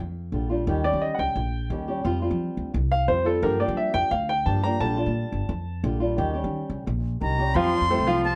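Latin music at 174 BPM in F major, sunny and danceable, this excerpt from a longer piece sets a clear, polished grand piano's arpeggios, with audible action noise and long sustain, over a thumpy, woody pizzicato upright bass and a thumb-plucked flamenco guitar with fresh strings, before an airy, reedy concert flute takes the melody at 7.2 s, bathed in plate reverb, all inside a small room with moderate reverb and a softened top end.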